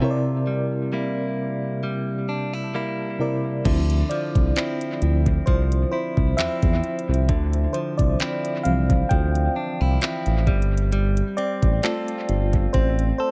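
A tremolo-laden FM electric piano sets the tone of this sensual, moody contemporary R&B excerpt in D minor at a slow 66 BPM, opening over clean, picked electric guitar arpeggios steeped in dub echo, before a mellow sawtooth synth bass and an up-front electronic drum kit with knocking kick, metallic hi-hats, handclaps and crash cymbal arrive at 3.7 seconds as the piano begins its solo, in a dry but echo-heavy mix.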